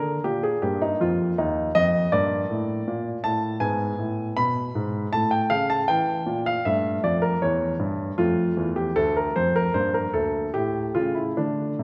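A polished, up-front grand piano opens alone on a B-flat chord and carries this grave, solemn baroque-style suite movement, cut from a longer piece, through about 11.8 seconds. Played with free rubato in 4/4 at roughly 70-82 BPM, it ranges from D2 to B5, moving through darkening harmonies from G minor and G-sharp minor to A, D minor and a closing A7. A moderate concert-hall reverb lends the piano's warm tone a stately depth.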